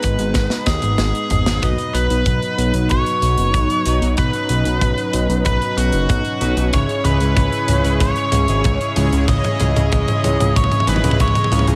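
A dark, nasal electric lead guitar with a parked wah, overdrive and delay carries the melody up front in this moody, cinematic synthwave excerpt at 94 BPM, over a thick, detuned sawtooth analog bass with tube saturation and sidechain pumping, a smooth, slow-attack analog pad with chorus and pumping in the background, a tight acoustic kick and a mid-forward metal kit of hi-hat, medium-tuned snare and toms that opens with a fill, and a glossy, retro pulse-wave polysynth with filter sweeps and chorus that enters with stabs at 1.6 s, all moving through G#m, B and C#m in a small room with light reverb.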